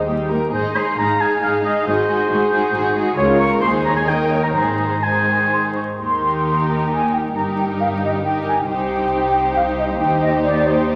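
Spirited and graceful, this quick classical-period orchestral fragment in triple time moves with a rubato feel as veiled, con sordino violin sections carry the melody and a second line over muted violas, dark cellos and close double basses, while a warm, up-front solo oboe sings a countermelody until 5.8 s and a pure, mellow flute section takes up a line from 5.5 s, all wrapped in a recital-hall reverb with vinyl crackle.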